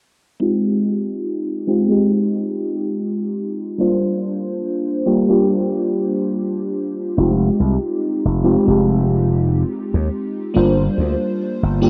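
Woozy and hazy, this vaporwave fragment, cut from a longer piece, drifts at 71 BPM in F dorian with a light swing on the sixteenths, its chords moving between Fm9 and Gm7 beneath a filter sweep that runs throughout. An FM electric piano layered with a soft pad carries the accompaniment from 0.4 seconds, its lush, dreamy tone shaded by analog chorus and tape echo. At 7.2 seconds a growly, punchy slap bass joins up front, its envelope filter and tube saturation set against a wet hall reverb and a low-pass filter that soften the mix.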